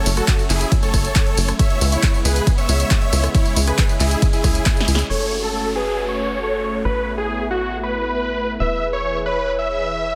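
Soaring and emotional, this uplifting trance excerpt in F# minor drives along at 137 BPM in a straight 4/4, opening in the thick of a drop where a huge, euphoric supersaw lead carries the melody up front, shaped by a low-pass filter, delay and sidechain pumping. Beneath it a lush, nasal unison pad holds sustained chords with chorus, while a tight, dark sequencer bass with a plucky filtered attack pushes the low end, both breathing with the same pumping. A punchy analog drum machine with a tape-warm, small-room character supplies handclaps, hi-hat, ride, rim click, snare and tambourine, and an up-front electronic kick anchors the groove until 4.7 seconds, when a drum fill leads into a band accent at 5.0 seconds. From 5.1 seconds the drums fall away, a velvety background synth lead with vibrato and chorus adds a second line, an electronic downlifter descends through the mix, and filter sweeps move across both the supersaw and the pad. 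The harmony travels from F#m and C#m7 back to F#m, then lifts through Asus2 to E, all set in light digital reverb within a dense, heavily limited modern master.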